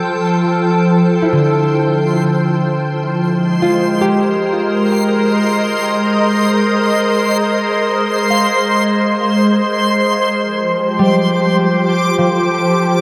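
In a slow, straight 3/4 at 50 BPM, this weightless, peaceful ambient passage drifts through an airy hall with a long, lush tail of 2.8 seconds. A soft, organ-like pad sits up front, holding pure, sine-toned chords with a slow attack, long release and a gentle ensemble chorus shimmer. Beneath it, a concert harp rings out fingerpicked arpeggios with an acoustic glow, carried further by a delay. High above, a reversed, granular texture fades in over the first 10.4 seconds, its dreamy, triangle-toned sustain blooming softly through its own reverb. The harmony moves from Fadd9 to Abadd9 at 3.2 seconds, then settles back on Fadd9 at 10.4 seconds as a new section opens in this short cut from a longer piece.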